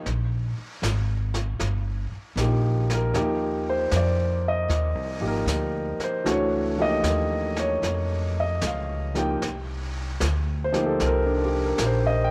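Jazz ballad with a late-night, intimate mood and a gentle swing, in which an up-front concert grand piano with a smooth, vintage tone and audible action noise plays accompanying chords from Eb through Ab69 and Db69 to Cm9, while a woody pizzicato upright bass and a softly brushed drum kit of snare and hi-hat in a small, natural room sit beneath it, all bathed in a moderate spring reverb in this 12.3-second excerpt cut from a longer piece.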